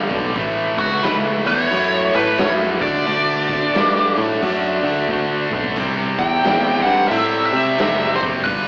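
Driving and swaggering, this short excerpt cut from a longer piece sits between blues rock power trio and southern rock, moving at 89 BPM in 4/4 with a swung eighth-note feel. A tight, bright distorted guitar, double-tracked and up front with slapback echo, plays the riff from the start, while a picked electric bass, growly and round, holds down the low end alongside it. A raw garage drum kit of hi-hat, kick, snare and splash cymbal sits in the background with a dark, saturated, gritty character, a punchy kick and a rolled-off top, and it plays a fill from 5.1 to 5.8 seconds. From 0.8 seconds a smooth overdriven lead guitar carries the melody up front, colored by wah and slapback echo. The chords move from A to D and then to C, and the whole take has the feel of a live gig heard through the venue's PA, with club reverb, small room ambience and an AM radio sound.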